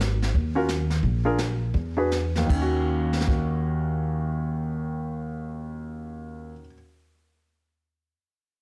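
A swinging 4/4 pulse between 154 and 180 BPM eases back over the first 2.5 seconds of this brief, smoky jazz piano trio fragment in E-flat minor, which settles onto an Ebm7 chord. Brushes on a distant, roomy kit with dark cymbals, a high-tuned snare and a boomy kick play only until 3.4 seconds, while a woody, growly pizzicato upright bass sits up front throughout. A clear, worn concert grand carries the melody from 0.6 seconds with deep bass and plate reverb, all heard through a heavily compressed, radio-like sound with light reverb.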